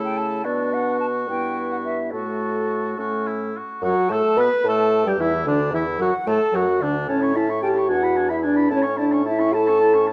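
This short cut from a longer piece opens with the full wind quintet sounding together from the first instant, a quick classical-period movement in 6/8 at 73 BPM counted in dotted quarters, played with a graceful, spirited and gently rubato feel. An airy silver concert flute carries the melody with soft attacks and expressive vibrato, while the oboe weaves a second line alongside it, its light vibrato heard at a roomy remove. The French horn gives a mellow accompaniment that sits forward in the blend, joined by the clarinet's softer, more distant accompanying voice. Underneath, the bassoon holds the bass with a present tone and a touch of vibrato. The harmony moves from B minor through E minor and F-sharp minor toward A in the opening section, then the second section from 3.8 seconds leans into D, E7 and back to A. Close, detailed microphones capture the players in a moderate recital hall with a 1.5-second reverb tail, all in a tuning slightly below standard pitch.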